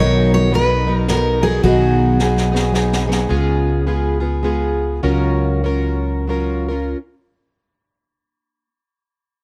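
Swung eighths in a lilting 3/4, somewhere between 85 and 108 BPM, give this short acoustic folk cut from a longer piece a pastoral, unhurried sway in F# major. A full-bodied jumbo steel-string guitar, picked up front with audible finger squeak, carries the melody over a boxy, shimmering twelve-string whose octave-doubled fingerpicking fills the accompaniment. A round fretless electric bass sits close underneath, and a vintage brush kit enters at 0.5 seconds, set further back, with a punchy kick, high-tuned snare, dark cymbals and a rolled-off top, ending its part with a fill. The melody guitar drops out at 3.0 seconds, and from 3.3 seconds the second section slows down as the chords move from Bmaj7 and G#m7/B to C#7 and F#maj7/C#. The sound is close and detailed, with little reverb and a warm, intimate presence.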